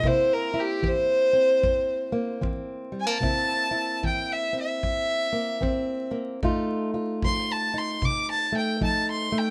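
A dark, woody fiddle leads this short excerpt of acoustic country blues, bowed by a single player with light vibrato and carrying a soulful, swaggering melody up front from the first moment. Beneath it, an old ladder-braced acoustic guitar, fingerpicked and plugged in, lays down a boxy, shadowed accompaniment that sits just as close to the listener. A punchy kick drum played with brushes in a small room keeps a swung pulse in four and drops out at 9.1 seconds, just before the fiddle and guitar finish together at 9.5 seconds. The harmony rests on a C7 chord before moving to F7 at 6.4 seconds. Light reverb and a layer of vinyl crackle give the recording an aged, lived-in patina.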